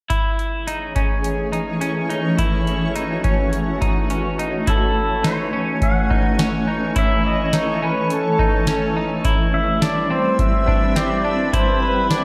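A steady, straight 4/4 pulse from a booming analog drum machine sits up front, its deep kick, crisp snare and metallic hats carrying a tape-tinged character from the start. This dream pop piece feels dreamy and floating, opening on an Amaj7 harmony where a clean, hollow-body electric guitar picks compressed arpeggios through lush chorus, slapback echo and delay. At 0.9 seconds a shimmering ambient pad joins up front with sustained chords, its detuned unison sine tones, octave-up shimmer and granular texture arriving with a slow attack and long release under chorus and built-in reverb. A twangy pedal steel guitar takes the melody at 4.7 seconds, played with fingerpicks and slide, using volume swells and its own slapback echo and delay. The harmony moves to Cmaj7 at 9.2 seconds, and the whole mix sits in a wet hall reverb with digital ambience that lends a big arena sound.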